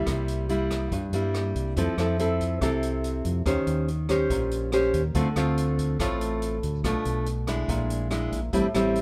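This short bossa nova excerpt opens on fingerpicked nylon-string guitar and fingered electric bass together, with an open jazz drum kit joining at 0.1 seconds, setting a sunny, romantic mood at 142 BPM in a straight 4/4 feel in F major. The classical-style guitar sits up front with a warm tone, fresh strings and audible finger squeak, carrying the accompaniment across a range from G2 to C5. Beneath it, the bass is dark, round and punchy, heard direct and amped in a low register from A1 to G2. The drums stay further back, with hi-hat, rim click and a boomy kick captured naturally in a studio room. The harmony moves from C7 into Fmaj7 at 1.8 seconds, then through Eb6, Dm7 and Bm7b5 before landing on Bb7#11, all in a dry, close sound with little reverb.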